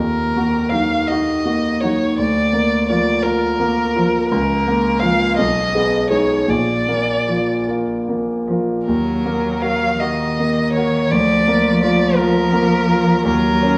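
Classical slow romantic movement for piano quartet in 6/8, solemn and elegiac, flowing with rubato at about 50-58 BPM over E-flat minor harmony, where a focused, richly vibrato-laden solo violin sings the melody up front above a clear concert grand piano with deep bass and long sustain, joined at 0.7 s by a smooth, distant bowed cello second line, all set in a wet recital hall reverb in this brief fragment of a longer piece.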